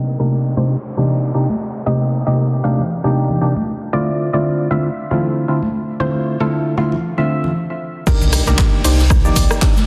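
A swung 116 BPM deep house groove in 4/4 and C dorian sets a late-night mood, as a hollow, dark organ stab with lush chorus, cassette tape character and sidechain pumping sweeps through its filter over Cm9 and Dm9 alongside a soft, round pluck melody with dub echo, bright high-tuned congas from 0.2 seconds and a background downlifter, then after a stop the drop lands at 8.1 seconds with an impact, a punchy tape-toned kick up front, a deep sine sub bass, an overdriven layered kit of crash, handclaps, hi-hat and rim click, a dark-cymballed vintage kit and a grainy cabasa, all in a dense, heavily limited master.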